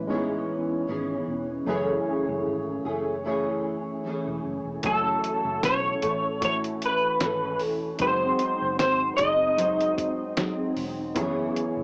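A wistful, hazy bedroom-pop fragment at 76 BPM in F# dorian opens with an up-front, fingerpicked nylon-string guitar wobbling with warbly pitch drift and chorus, over mellow, detuned electric-piano-like synth keys and a dark, foam-muted fingered bass, before a muffled sampler-style drum kit with a thumpy kick and fat snare enters at 4.8 seconds and a slightly broken-up electric guitar through a small old amp carries the melody from 4.9 to 10.7 seconds with analog delay, all captured in a small, wet booth like a home cassette recording heard through a small speaker.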